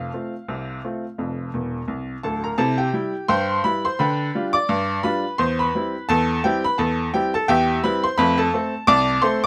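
A bright, intimate, slightly detuned upright piano with audible action noise and long sustain plays solo and up front in this lively, playful ragtime fragment, its swung 2/4 feel carrying a short fill from 1.5 to 2.6 seconds into a new section over chords moving from F through C and G7/D to C/E and back to F, all captured by close, detailed microphones in a dry room.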